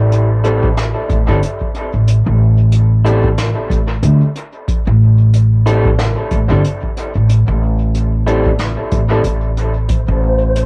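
A lightly reverberant home cassette recording, this deep, spacious ambient dub fragment moves at 92 BPM with swung sixteenths in A minor over a single Am7 chord, built on a woody pizzicato upright bass up front, a distant, roomy brushed jazz kit of hi-hat and high-tuned snare carrying tape character and dub echo, a deep analog electronic kick, and dark, slightly broken-up picked electric guitar stabs from a small old amp coated in 12-bit sampler grit, tape and dub echo, before an airy, breathy wind-like noise texture with its own reverb enters at 9.9 s.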